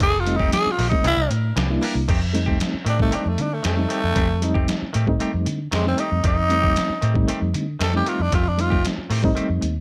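A growling, raspy tenor saxophone takes an up-front soulful solo with plate reverb over a laid-back straight-eighth soul blues groove, backed by a muffled, overdriven sampler-style trip hop drum kit, a round, foam-muted fingered bass, twangy clean guitar stabs, a reedy electric piano with fast tremolo entering at 0.3 seconds, and a very quiet, tight horn section holding chords until 2.0 seconds, in this excerpt cut from a longer piece.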